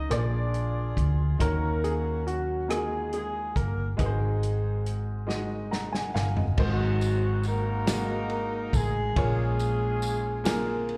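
Uplifting and hopeful, this slow gospel excerpt moves at 46 BPM in a straight 6/8, with a mellow horn section carrying the melody in smooth, vibrato-rich octave doubling alongside a natural grand piano that drops out at 5.2 seconds. A clear, woody upright piano with slapback echo plays accompaniment over a round, punchy hollow-body electric bass and an up-front soul drum kit with dark cymbals and a tight kick, the drums and upright piano both playing fills just before the second section begins at 6.6 seconds. A jingly, close tambourine joins at 7.0 seconds, and the whole performance comes across as a live club gig heard through the venue's PA, moving through chords like Bb7, Ebm7 and Ab7.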